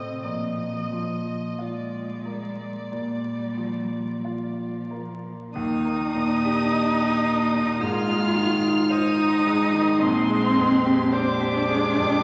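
A church reverb with a 3.2-second decay surrounds this recording, and a vinyl crackle runs beneath the music. It is a tender, warm, slow romantic movement for piano trio, cut from a longer piece, moving in a rubato 4/4 at around 43-56 BPM. A single violin carries the melody in its upper range with a rich, smooth, even bowed tone and vibrato, while a single cello sings a second line below, marked by a soft attack, portamento and expressive vibrato. The concert grand sits up front, brilliant, with deep bass and long sustain, supplying the accompaniment for both strings. The harmony moves from Bb to Eb at 5.5 seconds, where a new section begins, then passes through Ab before settling on a Bb13 chord at 10.0 seconds.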